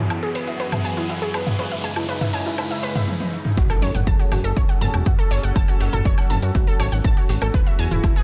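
An overdriven deep house kit of hi-hat, toms and woodblock joins almost at once beneath a lush, detuned unison pluck arpeggio under a filter sweep, an airy, resonant pad of sustained chords, a fat analog bass with tube saturation and a string-like drone in the background, while a riser builds this melancholic, dramatic melodic techno excerpt at 121 BPM in F# dorian over E and C#m. A drum fill leads at 3.6 seconds into the drop on F#m, where a heavy, overdriven electronic kick sits up front, a grainy cabasa enters and an impact rings out as the pumping pluck trails dub echo and a cassette-tape tint. The dense, heavily limited master carries light digital ambience.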